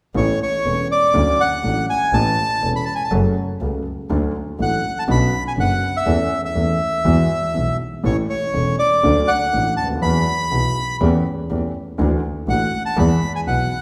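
A mellow, worn grand piano with audible action noise and a single bowed double bass with earthy tone and light vibrato open this playful, nostalgic tango excerpt in A major at 122 BPM with a rubato feel, joined at 0.2 s by a reedy, close-miked bandoneon carrying the melody up front, the whole set in the wet reverb of a recital hall.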